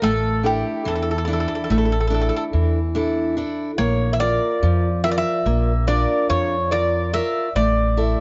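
Reflective and dark, this short Greek folk excerpt moves in a straight 9/8 at 143 BPM, with a mellow, metallic bouzouki carrying the melody over picked steel-string acoustic guitar and woody pizzicato upright bass, all three up front in light reverb, while the recording has the worn, warbly pitch drift of old cassette tape as the chords pass from Asus4 to Bb and settle on A5.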